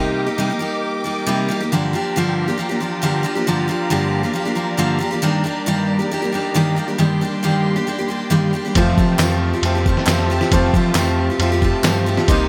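Lightly reverberant, this yearning, wistful indie folk piece in G minor at 136 BPM opens with a bright, full-bodied picked acoustic guitar up front, finger squeak and all, over dark, woody, distant bowed strings with vibrato, both bathed in plate reverb. The building arrangement fills out at 8.8 seconds with a plate-reverbed concert grand piano with short sustain in the background, a round, dark hollow-body electric bass, and a compressed, muffled sampler-style drum kit with thumpy kick, snare and ride, joined at 9.2 seconds by crisp group handclaps and a very quiet, jingly tambourine.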